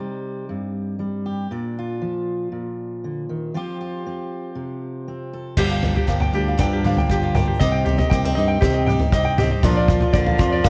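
Warm and nostalgic, this indie folk passage, cut from a longer piece, moves at 118 BPM in a straight 4/4 in Bb major, with a building arrangement that gathers players as it goes. A full-bodied, fingerpicked jumbo steel-string acoustic guitar with fresh strings opens alone over a progression that begins on Cm and passes through Bb and Fsus2. At 5.6 seconds the build-up begins: a bright, boxy swing-style acoustic guitar with audible finger squeak, a light fingerpicked tenor ukulele playing arpeggios, and a fingered electric bass with a direct, amped tone all join, while an up-front unplugged drum kit played with bundle sticks in a small room adds a drum fill across crash cymbal, punchy kick and toms. The fingerpicked guitar drops out at 9.6 seconds as a single bowed cello, earthy and biting with a smooth top, enters in the background on a second line, alongside a dark, woody upright piano with long sustain. 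Light studio reverb gives the ensemble a gentle sense of space.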